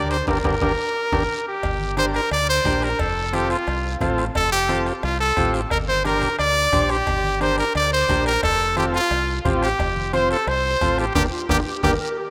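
A roomy hall reverb and rough home-demo sound frame this fiery, driving cumbia excerpt at 176 BPM in G minor, where an up-front bright trumpet with light vibrato and scooped notes carries the melody over a buzzy, overdriven vintage combo organ, a round fingered electric bass, a soft-beater bombo, raspy guiro, low-tuned congas and very quiet ringing timbales and cowbell, moving between Gm and F with band accents and a closing drum fill as a dark, breathy, distant clarinet slips in at 11.3 seconds.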